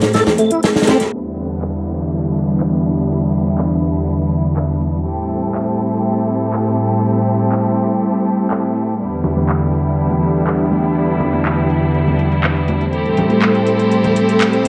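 A straight 4/4 breakbeat groove at 122 BPM in E minor opens with a crunchy, saturated breakbeat kit of hi-hat and snare that stops at 1.1 s. Throughout, a layered house kit of handclaps and metallic hats runs along, sitting under a filter sweep from 1.1 s, and ringing, high-tuned congas return in the background from 9.2 s. A thick, detuned sawtooth pad with chorus and 12-bit sampler grit holds sustained chords moving between Am7 and Em7, while a lightly overdriven tonewheel organ with key click and slow rotary plays a brief riff, and a clear, focused studio string section adds bowed stabs with digital delay. A very quiet downlifter sits beneath the energetic, gritty mix, which carries vinyl crackle and a small room ambience.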